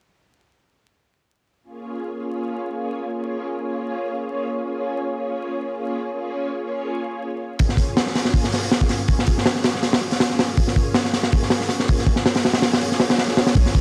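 A lightly swung sixteenth-note feel in 4/4 drives this nostalgic, dark drum and bass and jungle cut, taken from a longer piece. A soft vintage string machine opens at 1.7 seconds with silky, slow-blooming sustained chords on a Bbm7, thickened by ensemble chorus and held up front in the mix. At 7.6 seconds a crunchy acoustic breakbeat kit arrives with hi-hat, a tight kick and a medium-tuned snare; its saturated, rolled-off sound sits close and up front, and the kick drops out just before the end. A deep, mellow 808-style sine bass lands at 13.6 seconds as a single long, decaying Bb. The whole recording feels dry and gritty, like hardware, with vinyl crackle and a light touch of small-room reverb.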